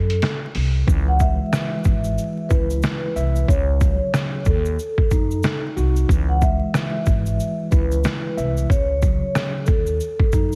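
A metallic, ringing soft-mallet vibraphone melody and a woody, growly pizzicato upright bass open this dark, moody boom-bap hip-hop excerpt in C# minor at 92 BPM with a swung 16th feel, joined almost at once by a muffled, pitched-down sampler-style drum kit with a thumpy kick and medium-tuned snare sitting up front, while from 0.9 s the hi-hat falls silent as a mellow tine electric piano with cassette-tape character and a grainy, bright tube shaker come in over C#m, F#5/C# and D#dim chords, the mix wrapped in small-room ambience, vinyl crackle and a heavily compressed radio sound.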